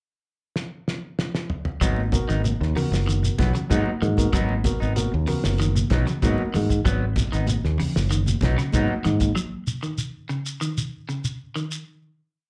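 Heard through a club PA with light reverb, this short, hypnotic and intense afrobeat piece opens with a cloth-damped, thuddy drum kit playing a fill at 0.6 seconds. At 1.8 seconds the groove settles onto a single chord, with a dark, round, punchy fingered bass riff up front and a grainy shekere close and dry, joined at 2.0 seconds by high-tuned congas in the background. Two slightly broken-up, twangy electric guitars share the vamp: one picks a bright, scooped arpeggio ostinato with subtle chorus, the other strums funky upper chord stabs with slapback echo, while a reedy electric piano adds syncopated rootless chord stabs.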